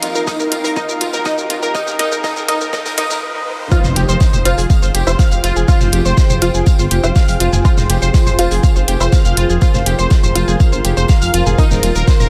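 A dry, tightly mixed slice of dark, melancholic melodic techno opens on a build-up: a drum fill, a very quiet electronic riser and a tense, nasal bowed-like drone join a deep, moody ambient pad, a blurred granular cloud pad, bright analog pluck arpeggios and muted dub chord stabs coated in phaser, lush chorus and cassette-tape wear. After a brief stop, the drop lands at 3.7 seconds with an impact, and a menacing, saturated detuned saw bass swells in beneath the up-front deep electronic kick, whose sidechain pumping pulls on the bass, pluck, stabs and cloud pad. Layered deep house hi-hats, shaker and toms drive the groove, while a gritty, rolled-off garage kit of snare, hats and tambourine sits further back.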